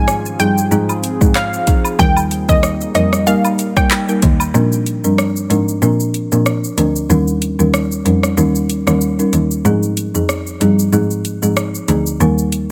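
A bouncy, summery dancehall groove at 94 BPM in 4/4, its sixteenths swung and its afro-pop drum kit of handclaps, hi-hat, deep kick, rim click and shaker sitting up front with an electronic, produced sheen and metallic hats. The piece is in Eb major, and this cut from a longer piece moves through Ab6, Eb, Bbadd9, Eb7 and back. A folk marimba played with medium mallets carries the accompaniment, its hardwood bars sounding woody, dry and rustic, while a clear cello holds the bass with light vibrato and an airy, earthy bow, close and up front. For the opening 3.9 seconds a round, warbling analog pluck with chorus and delay states a short melody, as a deep, moody pad of detuned sawtooth and sub octave with sidechain pumping and built-in reverb murmurs in the background alongside an acoustic cabasa and woodblock. From 4.5 seconds the pad and hand percussion drop away and the kick falls silent, leaving marimba, cello and the rest of the kit to carry the second half.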